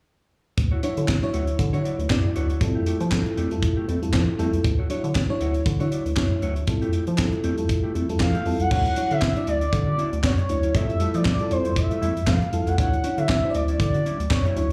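A tight, dry funk kit with handclaps, a rubbery, hollow square-wave bass and a dark, clean fingered electric guitar riff with subtle chorus and slapback echo open this smooth, danceable early-eighties boogie funk groove at 118 BPM in D major, joined at 0.8 seconds by a lush, dreamy FM electric piano with a soft pad layer, tremolo and chorus, before a smooth, gliding portamento lead with vibrato takes the melody up front from 8.2 seconds, all over alternating Dmaj9 and Fmaj9 chords and heard through a club PA with small-room ambience.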